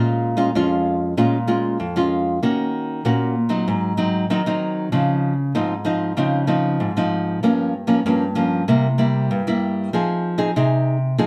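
Samba for solo nylon-string guitar, lively yet bittersweet, in a short passage cut from a longer piece. The fingerpicked acoustic guitar has a small, warm tone and sits up front, moving through chords such as Bbm7, Dbmaj9 and C7 before settling on Fm7. A wet studio reverb places the listener further back in the room.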